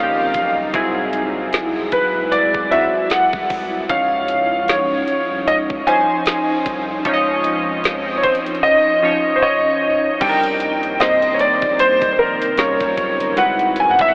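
Longing and moody, this contemporary R&B excerpt at 76 BPM with a swung 16th feel sets a clear, up-front concert grand piano melody with analog chorus and tape echo over round, evolving analog keys, a glassy, ethereal FM pad with slow attack and sidechain pumping, a deep, saturated sub bass in the background and a trap kit with knocking kick, woody snare and metallic hats entering at 0.3 s, while a very quiet electronic swell arrives at 7.6 s and Eb9, Ab7alt, Dbmaj9 and Cm9 chords drift through a dreamy, reverb-soaked mix with a telephone-like sound.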